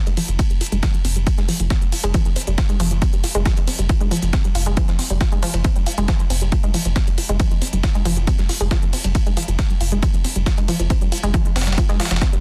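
Driving peak-time techno in F minor at 137 BPM, this dark, intense excerpt holds on a single Fm chord throughout its 12.4 seconds. A saturated sub bass anchors the low end on F1, its deep, thick triangle tone fast in attack and sustained, shaped by tube saturation, a low-pass filter and sidechain pumping. Above it, an analog pluck riff between F3 and F4 has a round, detuned sawtooth character with a bright, decaying filter pluck, coloured by chorus, tape echo and sidechain pumping. The overdriven electronic kick enters at 0.4 seconds, heavy and up front, while an electronic hi-hat with smooth, overdriven hats pumps against the sidechain. A gritty, pitched-up breakbeat kit of hi-hat, ride cymbal and medium-tuned snare sits further back, compressed and high-pass filtered, all within a digital ambience and a dense, heavily limited modern master.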